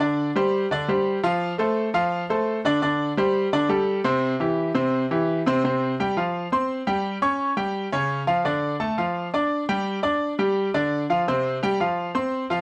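Festive and joyful, this short Latin cut from a longer piece features a solo grand piano, bright and brilliant yet intimate and up front, with audible action noise and long sustain ringing through a moderate studio reverb as it moves across suspended chords, a Db and a closing G7sus4 over 12.6 seconds.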